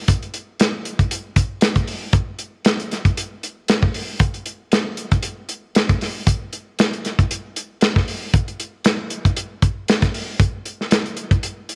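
Blues at 116 BPM in 4/4, this gritty, soulful excerpt rides a light swing on the sixteenth notes. The only part is a soul drum kit of hi-hat, kick drum and snare, playing from 0.1 to 11.8 seconds. The kit sounds acoustic, dry and lo-fi, with a punchy kick and a medium-tuned snare. Its top end is rolled off, giving a muffled tone, and it sits up front in the mix. A moderate echo chamber reverb with a 2.1-second decay surrounds the recording, lending it a sense of space.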